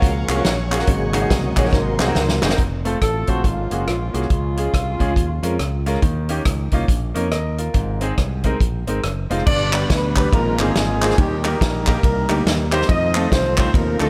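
Uptempo gospel at 140 BPM with a swung 4/4 feel, hopeful and jubilant, opening with a smooth tonewheel organ solo over the first 2.6 seconds, accompanied by nasal, gut-toned chamber strings, with crisp group handclaps and then a drum fill joining soon after. A clear baby grand piano, a punchy, bright fingered electric bass and an up-front, small-room country drum kit drive the groove throughout, while a mellow alto saxophone and a horn section with octave doubling and slapback echo carry the melody together from 3.0 s. From 9.5 s the music settles into Eb major as the horns, organ and handclaps return, all set in light reverb.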